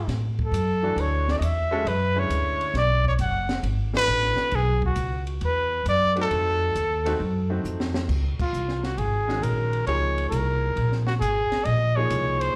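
A swung 4/4 groove drives this intense, hypnotic modal jazz passage, cut from a longer piece and heard live through a club's PA with a light wash of room reverb. Pizzicato upright bass sits up front, woody and warm with steel strings, while a compact cocktail kit of ride, hi-hat, snare, kick and crash plays further back, dark and smooth with a high-tuned snare, a punchy kick and a rolled-off top. A breathy trumpet carries the melody as the soloist, up front with vibrato and set in plate reverb and slapback echo. From 0.8 seconds an upright piano accompanies with a bright, brilliant, polished tone and long sustain, also touched by slapback echo. The harmony moves from a brooding minor-eleventh chord through a tense altered dominant. A drum fill at 7.6 seconds leads into the second section, where a band accent lands at 8.3 seconds.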